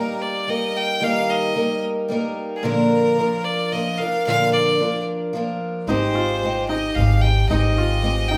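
The recording has a roomy, reverberant sound, with a small acoustic folk group playing live together in a large studio whose wet reverb hangs around each note. The mood is nostalgic and peaceful, moving at 111 BPM in an unhurried 3/4 in Eb major, in a short passage cut from a longer piece. A bowed fiddle carries the melody up front, nasal and intense with a light vibrato and an airy bow, while a picked twelve-string acoustic guitar supplies a shimmering, octave-doubled accompaniment from the very start. At 5.9 s, as the harmony, having moved from Eb through Bb, arrives at Abmaj7, an upright piano joins with brilliant, intimate arpeggios whose action noise is audible. An up-front upright bass enters at the same moment, plucked and thumpy, with a dark, woody tone.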